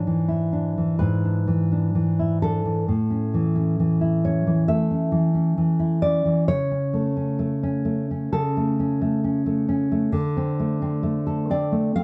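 A nylon-string classical guitar plays alone, up front and full-bodied, with a deep, dark tone, thumb-plucked notes and an audible finger squeak. This romantic solo piece in A major moves at 66 BPM in 4/4, its rubato feel giving it an intimate, wistful mood. The harmony passes from E7/G# to A at 2.9 seconds, then to A/C# at 6.5 seconds and D7(no3) at 10.1 seconds. The guitar ranges from G#2 to F5 across the 12-second span, which is cut from a longer piece. Light reverb surrounds the instrument, and the production is dark and warm.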